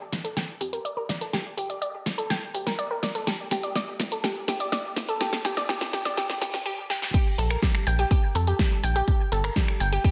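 A bright, detuned analog pluck with chorus, gritty 12-bit sampler texture, sidechain pumping and dub echo carries a filter sweep through the build-up of this driving, emotional progressive house piece, over a tight sawtooth sequencer bass and a pop drum kit whose fat snare, hi-hat, shaker, finger snaps and crash cymbal play a drum fill, until a punchy electronic kick drum arrives with the drop at 7.1 seconds.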